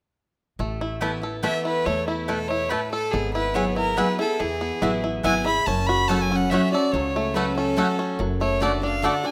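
A clear, biting fiddle sits up front and carries the melody from 1.4 seconds, bowed with light vibrato and an intense, close presence. Around it, this joyful, lively bluegrass waltz in A major at 142 BPM moves over a full-bodied picked dreadnought guitar, twangy banjo arpeggios played with fingerpicks, bright mandolin stabs on double strings and a thumpy, woody pizzicato upright bass on gut strings. The harmony moves from Asus2 through Eadd9/G# and F#m to D/F#, and the rough home demo mix carries a light reverb with small room ambience.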